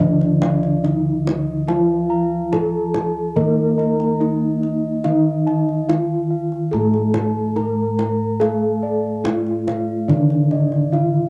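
A ringing bronze metallophone carries the melody of this stately, shimmering Javanese gamelan fragment, over a lower metallophone accompaniment, arpeggios from high bossed gongs and a further metallophone, soft, round gong bass notes, and a tight, vintage-toned kendang that drops out at 11.0 seconds, all set in a small room with light reverb and a cassette-tape hue.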